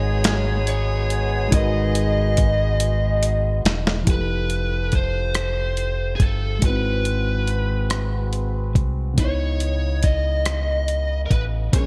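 Slow six-eight R&B with a sultry, late-night mood: a biting, overdriven lead guitar carries the melody over a reedy, worn electric piano, background French horn chords in a mellow classical style, and vintage jazz horn stabs with delay that stop at 3.6 seconds, anchored by a deep, round dub bass and a gritty, compressed sampler-style soul kit with gated reverb and a drum fill from 2.8 seconds, in a bright 1980s-style digital production with light reverb.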